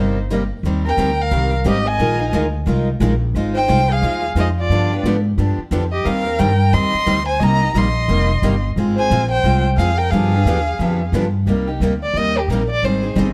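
A bowed violin carries the melody up front in this fiery, swinging excerpt of acoustic string swing in C minor, its expressive line sung with vibrato, portamento and a smooth top as it ranges from G4 to C6 at a brisk 177 BPM. A second bowed violin, warm and sitting further back, plays a supporting line beneath it until about 11.1 seconds, leaving the lead to take a solo from 11.5 seconds. Two picked steel-string acoustic guitars fill out the accompaniment: one bright with audible finger squeak, the other boxy with a fresh-stringed, parlour character. Underneath, a pizzicato upright bass with gut strings sits up front, sounding woody and thumpy. The harmony moves through minor-key changes such as Cm7, Eb6, Fm7/Ab and G7b9 over a 4/4 swing feel, and the whole mix has a dark production with light reverb.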